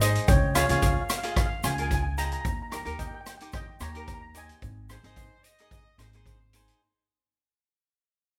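A light reverb surrounds this short, fading calypso excerpt, a sunny and bouncy groove in Ab major at 111 BPM moving through Db, Eb and Ab. An airy, shimmering steel pan carries the melody up front over crisp picked cavaquinho, woody pizzicato upright bass, a street-band drum kit with a boomy kick, hi-hat and rim click, and a grainy tube shaker tucked in the background. At 4.9 seconds a tight, punchy horn section slips in faintly with a second line.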